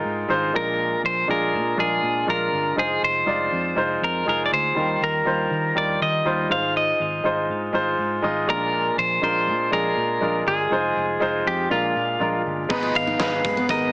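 Piano-driven pop with an uplifting, hopeful mood, this short cut from a longer piece moves in a straight 4/4 feel. A bright, twangy clean electric guitar carries the melody up front, its pitch drifting with a gentle warble, while a clear, polished baby grand piano supplies present accompaniment beneath it. A vintage fingered electric bass, dark, round and foam-muted, sits low in the mix. The harmony cycles through Ab6, Bb7, Fm7 and Ebadd9 before turning to Abm at 12.7 seconds, where a huge arena drum kit comes in with a fat snare, punchy kick, hi-hat, handclaps and a crash cymbal. Just after, a full-bodied picked steel-string acoustic guitar adds a brief riff. The whole mix has moderate studio reverb and a heavily compressed, small-speaker radio sound.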